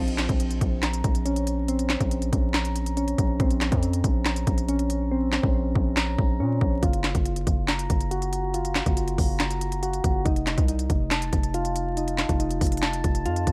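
A distorted, heavy 808-style bass with a noise layer drives this dark, menacing half-time trap excerpt at 140 BPM in Bb harmonic minor, under soft, round electric-piano-like synth keys playing chorused, delayed arpeggios through a low-pass filter sweep, while a trap drum kit with a hard-clipped kick, sharp snare, crisp hats and handclaps sits up front, its hi-hats muted from 5.1 to 6.8 s, as chords move from Bbmadd9 to Gbmaj7 at 6.8 s and F7 at 10.3 s in a dry mix dusted with vinyl crackle.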